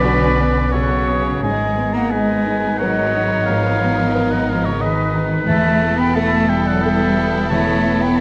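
In a rubato 3/4 at 88 BPM, this sorrowful, bittersweet cinematic film score excerpt drifts through Bmadd9, G#madd9 and Esus4 chords as a soft-attacked, vibrato-rich violin section carries the melody in the background, wreathed by second lines from a bright clarinet, a clear lightly vibrato oboe, a pure, distant straight-toned flute and a lush lower violin section. A dark, mellow grand piano and a focused viola section on a single B3 supply the accompaniment, while a close cello section and a smooth, even double bass section anchor the bass. The whole orchestra sits in moderate concert-hall reverb across the full 8.2 seconds.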